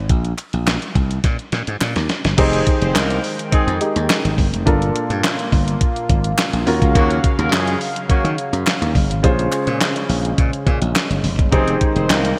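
A punchy, bright slap bass drives this danceable early-eighties boogie funk excerpt from the start, sitting up front beside a clean 12-bit drum machine with a thumpy kick, fat snare, hi-hat, crash and handclaps bathed in gated reverb, while a very quiet, crisp group handclap adds a human touch. After a drum fill from 1.2 seconds, mellow, distant horns with light vibrato, an intimate grand piano with audible action noise, and a smooth, detuned analog pad with chorus all arrive at 2.4 seconds over minor ninth chords beginning on Fm9. A lush hall reverb and bright 1980s-style digital production give the whole groove a glossy, funky sheen.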